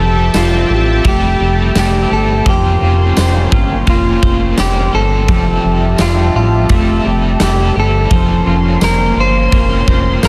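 A fat, saturated analog bass sits up front in this floating, dreamy dream pop excerpt at 85 BPM in F major, while a dark, picked electric guitar carries the melody through warbly pitch drift and tape echo, a second guitar picks chorused, echoing arpeggios, a bright overdriven stack guitar with tremolo hovers in the background, a lush, airy detuned pad with phaser holds slow-attack chords over Fmaj9 and Bbmadd9/F, and a huge, punchy arena drum kit with bright cymbals and tambourine enters at 0.3 s in a small room under a dense, heavily limited master.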